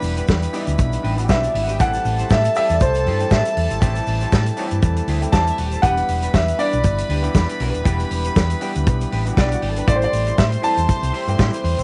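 A home cassette recording with a rolled-off top end and light reverb frames this driving, danceable disco fragment, cut from a longer piece, as it moves between Em7 and Am7. A tight, mid-forward soul drum kit and a dark, round hollow-body bass sit up front, while a grainy egg shaker and a clean semi-hollow electric guitar with lush chorus hang in the background beneath a worn grand piano accompaniment and a reedy, gut-string chamber violin section with light vibrato. From 1.3 s to 11.1 s, a clear concert grand piano carries the melody with long sustain.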